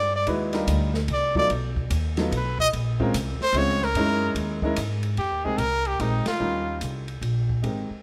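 Small-group swing and bop jazz in a cool, swinging 3/4 at 147 BPM, cut from a longer piece, with a close-miked trumpet carrying the melody as a solo through 5.2 seconds, its tone warm and touched with light vibrato. A woody pizzicato upright bass sits up front beside it, while a natural-sounding baby grand piano with short sustain comps through rich chords like Ebmaj7 and Gb13, and an acoustic drum kit with dark cymbals, a medium-tuned snare and a punchy kick keeps time on hi-hat and ride. A moderate large-studio reverb surrounds the group, and the band hits a shared accent at 6.2 seconds during the closing section.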